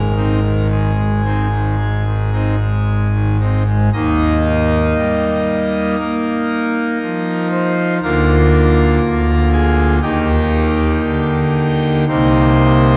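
Vinyl crackle and a wet cathedral reverb with a 4.5-second tail frame this reverent, majestic classical chorale, cut from a longer piece, where a solo pipe organ on full registration sits up front, its brilliant mixtures and romantic voicing reaching from deep pedal tones to a ringing treble in rubato 4/4, shifting to a new key centre at 3.9 s and settling on a minor seventh chord at 12.1 s.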